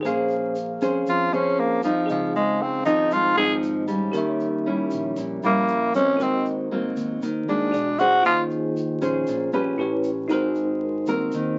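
A straight 4/4 bossa nova pulse at 117 BPM in Bb minor sets an intimate, melancholic mood in this short passage cut from a longer piece. Up front, a full-bodied nylon-string guitar is fingerpicked with audible finger squeak, joined by a bell-like tine electric piano heard through its built-in speakers and a fingered electric bass sitting low and direct. A grainy egg shaker stays in the background throughout. From 1.1 to 8.4 seconds a growling tenor saxophone takes the solo, breathy and raspy with soft attacks and scooped notes in a jazz style, placed at the front of the mix. The harmony moves through rich extended chords such as Bbm9, Dbmaj9, Eb7b9 and Ab9, all set in a small room with a modest reverb and the crackle and muffled top end of a very old 78 rpm record.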